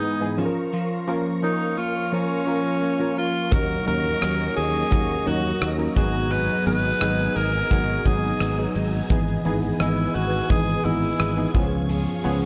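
A straight, unhurried 4/4 carries this uplifting, romantic 1980s-style pop fragment, where round, detuned sawtooth analog keys with a chorused filter sweep, a mellow, warbling organ-string pad and a clean, compressed guitar riff tucked in the background open the passage beneath a raspy, gritty alto saxophone melody that sounds up front yet roomy, singing with vibrato until 11.5 seconds. At 3.5 seconds a huge arena drum kit joins with a punchy kick, hi-hat and rim clicks in a pumping hall, alongside a growly, bright fretless bass that sustains underneath. Light reverb wraps the mix as the minor-tinged seventh chords move toward a closing C#7.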